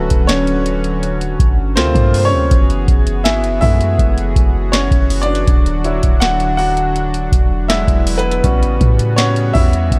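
A clear, natural grand piano opens this moody, longing contemporary R&B excerpt, taking the featured role up front over a shimmering, retro pulse-width pad whose sustained chords pump with sidechain compression and a deep, boomy 808-style bass with a fast attack and dark decay. An electronic analog drum machine arrives at 0.1 seconds, sitting dry and forward with a booming kick, crisp snare and metallic hi-hats at a relaxed 81 BPM in straight 4/4. At 3.2 seconds a faint FM synth chime enters in the background, its inharmonic, ringing tone thickened by ensemble chorus and delay. The harmony moves through lush extended chords, from Dmaj7 through Gm11 and F#m11 and back, then closes on E9 and A13. The room is close and largely reverb-free, so the piano and drums sound immediate and intimate.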